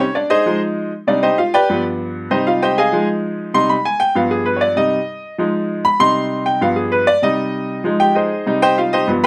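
A bright baby grand piano plays alone from the start in this short excerpt of a fiery Latin piece at a brisk 195 BPM in C harmonic minor, its brilliant, up-front tone ranging from G2 to C6 over a passionate, repeating Fm7–Cm–G7–Cm cycle in a moderate studio reverb until it cuts off at 9.3 seconds.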